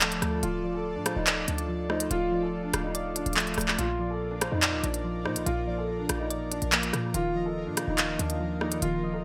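A crisp, up-front drill drum kit drives this tense, cold hip hop fragment, its hi-hats, handclaps and rim clicks carrying a gated reverb over a half-time feel until 8.9 seconds. Underneath, a short, punchy 808-style bass with a fast attack and decaying tail anchors the low end. A dark, mellow grand piano carries the melody through lush chorus, a low-pass filter and digital delay, while soft, round electric-piano-like synth keys fill in the accompaniment. An airy, breathy pad holds sustained chords with a slow attack and long release, and from 0.6 seconds a velvety synth lead with vibrato and a filter sweep sits in the background as a second line. The harmony moves from Dm to Bb to Ebsus2, and the bright 1980s-style digital production adds light reverb and digital ambience to this section cut from a longer piece.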